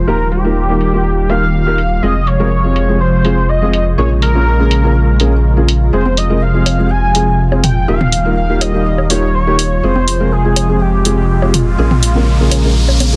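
A straight progressive house groove drives this dreamy, bittersweet excerpt, with an up-front electronic hi-hat, tape-warm and low-pass filtered, ticking through from the first moments, joined at 6.1 seconds by dry, overdriven electronic congas, bongos and toms. Underneath, a round analog bass sits deep and dark with a fast attack, while a detuned sawtooth pad holds sustained chords that warble gently under subtle chorus and a filter sweep. A felt-muted upright piano adds soft, boxy stabs, mellowed further by a low-pass filter and delay. Over the top, a thick, nasal unison lead carries the melody with vibrato, bathed in lush chorus and delay. The harmony cycles through Ebadd9, Fm and Bbm7, and a sub drop opens the passage before an electronic riser climbs in at 11.0 seconds, all within a dense, heavily limited modern master and a digital ambience.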